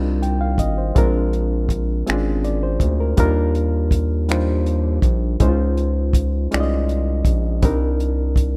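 Sultry and yearning, this slow six-eight R&B excerpt in C minor at 54 BPM sets a barky, reedy electric piano sounding through its built-in speakers over a round, wave-folded analog bass and a dry, dark soul drum kit of finger snaps, hi-hat and tight kick, all captured in a rough home demo mix as the chords move from Cm9 through Bb9, Ebmaj7 and Dbmaj9 before returning to Cm9.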